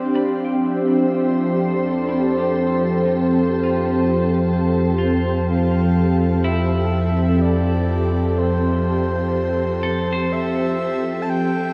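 Weightless and luminous, this ambient excerpt drifts at 62 BPM in 3/4 over a single Fmaj7 in F lydian, where a glassy, up-front FM pad holds slow-blooming chords while a breathy, flute-like synth lead with vibrato and a bright, twangy clean electric guitar picking arpeggios in the background both fade in through lush chorus and analog delay, and a deep, ominous rumbling drone rises from 2.3 seconds, all of it soaked in a huge, dreamy reverb.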